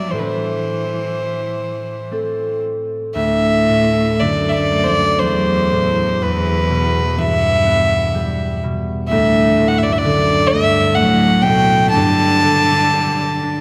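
A fiddle with a biting, nasal gut-string tone carries the melody up front from the first moment, touched by a slapback echo. Beneath it, a bowed cello with light vibrato and a smooth top plays a second line, while a ringing, fingerpicked concert harp supplies the accompaniment. This longing, haunting Celtic slow air moves freely in 3/4 at around 57-64 BPM through Am, Dadd9, Em, D and Gsus2, bathed in a wet church reverb with a 3.7 s decay, and is cut from a longer piece at 13.6 s.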